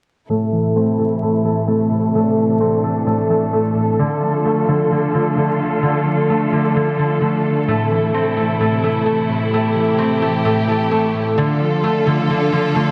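Melancholic and eerie, this half-time hip hop excerpt at 130 BPM in A minor sets ringing, fingerpicked concert harp arpeggios with tape echo up front beside warbling, detuned lo-fi synth keys with chorus and a lush bowed string section full of vibrato and portamento, each part low-pass filtered and bathed in huge ambient reverb and vinyl crackle as a filter sweep runs over the alternating Am and Dm chords.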